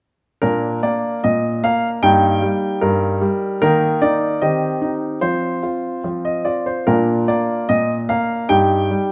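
A graceful, cheerful classical-period piano sonatina in 2/4, cut from a longer piece, where a clear, polished baby grand plays solo from 0.4 to 9.1 seconds with a rubato feel, sitting up front through close, detailed microphones in a moderate recital-hall reverb.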